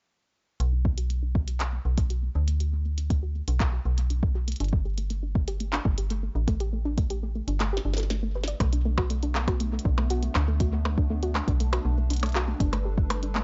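Eerie and glitchy, this IDM fragment in B minor moves at 120 BPM in a straight 4/4, with a dark, metallic FM bass up front beneath soft, round, warbling pluck arpeggios treated with chorus and tape echo, both under a filter sweep through the opening stretch. A tape-warm electronic kick anchors clicky hats, a tiny snare, handclaps and percussion blips from a glitchy drum kit in small room ambience, until the kick drops out at 7.6 seconds for a drum fill. At 8.6 seconds a hollow, flute-like pad with ensemble chorus settles into the background on sustained chords, while the whole passage keeps a dry, gritty hardware character as it cycles between Bm7 and G-based chords.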